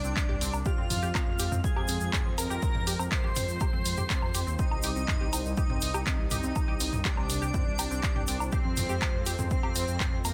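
Melodic techno at 122 BPM in a driving, dark mood, cut from a longer piece, where a punchy, up-front electronic kick and an analog drum machine with handclaps, hi-hat, toms and woodblock enter at 0.2 seconds over a grainy tube shaker, a menacing, saturated detuned saw bass, a tight sequenced arpeggio synth with tape echo, a mellow analog pad holding sustained chords, a smooth supersaw melody and an airy, dreamy lead with phaser and vibrato, the synths all pumping to the sidechain as the harmony moves through F minor and C minor in a dense, heavily limited mix with light reverb.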